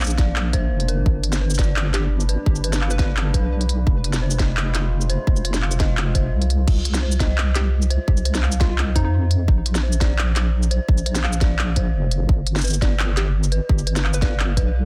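Half-time drum and bass with a cinematic, dark mood, this clip from a longer piece rides a heavy half-time groove. A deep wobbling bass sits up front, its square and sine tone compressed and treated with chorus, while a tight, layered electronic kick punches alongside it. The organic-sounding electronic kit adds a woody snare, smooth hats, shaker, handclaps and crash. Above them, an eerie, inharmonic FM bell plays decaying arpeggios through chorus and digital delay. A moody, detuned sawtooth pad with a sub octave holds sustained chords in the background, pumping against the beat, and drops out at 6.6 s. A hollow, warbling square-wave pluck with a vintage, wave-folded edge first appears at 1.9 s and returns in short melodic phrases over a Bbadd9, G, Fm and Cm progression, all within a dense, heavily limited modern master.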